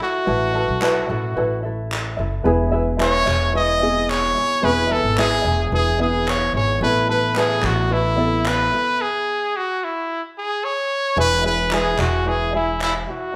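A live, single-room sound with a moderate large-studio reverb frames this carefree, heartfelt acoustic pop excerpt, where a brilliant, up-front solo trumpet carries the melody with vibrato, scooped notes and a slapback echo. A mellow, thumb-plucked tenor ukulele and a woody, growly pizzicato upright bass with steel strings hold the groove, while crisp, distant group handclaps add human percussion. A soft, felt-muted upright piano brings an intimate touch from 2.4 s until a stop at 9.0 s, and the chords resume at 11.2 s.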